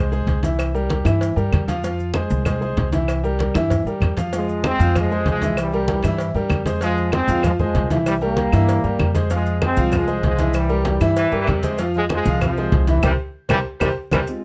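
Fiery and danceable, this salsa excerpt drives along at 193 BPM in a straight 4/4, cut from a longer piece and settling into F harmonic minor from 4.3 seconds as the harmony swings between Fm and C7. An up-front concert grand piano with a clear, boxy tone and audible action noise lays down the accompaniment, while a woody, dark upright bass, plucked on steel strings, anchors the low end. Low-tuned congas struck with hard hands sit close alongside grainy maracas, with a round, saturated cowbell and small-room claves tucked in the background. After a drum fill from 3.4 seconds, a tight trombone section with light vibrato and a smooth top takes the melody up front at 4.4 seconds, and a vintage saxophone section joins with a second line at 11.2 seconds. The sound is dry and closely miked, and the band closes on an accent from 13.0 seconds.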